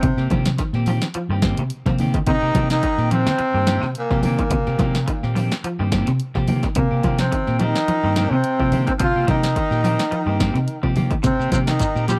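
A clear, up-front trombone carries the melody over a raspy, gritty baritone saxophone second line, a round, dark fingered bass, background semi-hollow guitar arpeggios with subtle chorus, background congas with a damped, thick-skinned tone, and a punchy analog drum machine on kick, snare and hi-hat, all in a defiant, funky afrobeat groove at 107 BPM in C minor on a Cm7 chord with swung 16ths; clean electric guitar stabs with subtle chorus join at 0.2 seconds, a drum fill hits at 1.9 seconds, and a grainy shekere arrives at 11.2 seconds in this dry, close 1970s-style small-room recording.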